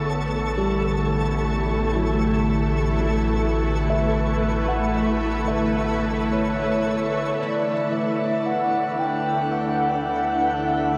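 Ambient excerpt at 57 BPM in D major, serene and luminous, bathed in a wet shimmer reverb with a cassette-tape sound. A cloudy, blurred granular pad sits up front holding sustained chords over a round, deep analog bass, a calm organ-like drone with ensemble chorus and a twinkling, sparkling granular texture, while a soft felt-muted upright piano plays intimate, dark arpeggios in the background, its action noise audible, until 7.7 seconds. A velvety, smooth synth lead with chorus, vibrato and diffuse delay enters at 6.3 seconds, carrying the melody as the harmony moves from A7 to Dmaj7.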